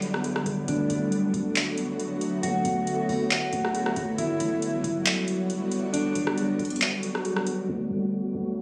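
Atmospheric cloud-rap hip hop in D major at 137 BPM with a half-time feel, this dreamy, floating excerpt from a longer piece rests on an ethereal, airy pad up front, detuned and wave-folded with ensemble chorus, built-in reverb, sidechain pumping and a low-pass filter, sustaining Gmaj7 and D6 chords over a soft, round 808-style bass sitting deep in the background. A booming analog drum machine with a deep kick, metallic hi-hats, handclaps and rim clicks drives the groove until 7.6 seconds, its kick dropping out from 6.8 seconds, while a mellow, clean electric guitar played with the fingers carries a dark, filtered melody with delay from 0.7 to 6.8 seconds. The whole sound was caught on a phone in the room with light studio reverb and compression.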